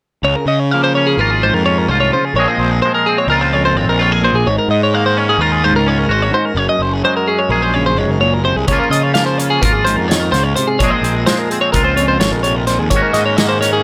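Set in a straight 9/8, this wistful, bright math rock and midwest emo passage pairs a twangy, fingered electric guitar with analog chorus against clean, compressed twelve-string electric arpeggios and an overdriven fuzz bass, all up front in a dry mix, before a loose indie drum kit with a punchy kick, a medium-tuned snare and hi-hat enters at 8.7 s in a small, pumping room over chords moving from Bbm9 through Ab9sus4 and Gbadd9.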